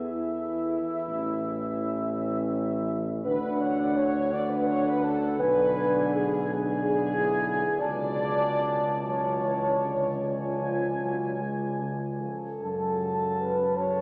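A classical, hymn-like piece for brass band, this melancholic, elegiac passage is cut from a longer work and unfolds in a rubato 12/8. A flugelhorn carries the melody with a soft attack and light vibrato, sounding mellow and distant, while a French horn section sits up front on a second line. In the background, a clear euphonium and a smooth-topped trombone with light vibrato fill out the accompaniment. A warm tuba, also up front, anchors the bass. The harmony moves from A through D, G#dim/B and F#m/C# to a C# chord before settling on F#m at 12.6 seconds. A wet cathedral reverb with a 7.7-second decay surrounds the ensemble, lending it a spacious, solemn glow.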